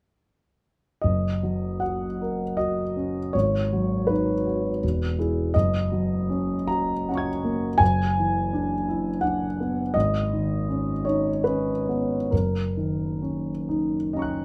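In a flexible 3/4 that breathes with rubato, the tempo drifts between 65 and 86 BPM, giving this impressionist solo piano piece a luminous, dreamy, unhurried sway. A concert grand carries the whole passage alone from 1.0 to 14.4 seconds, ranging from a deep bass E1 up to G#6 in F# mixolydian, tuned to A4 = 439 Hz. The harmony glides from F#6 through G#m7, E and F#69 to E9/F#, then G#madd11, before settling back on F#6 at 12.3 seconds. The piano sounds clear and intimate, placed up front by close, detailed microphones that catch the audible noise of its action alongside a natural tone. A light reverb adds a gentle halo to this brief portion of a longer work.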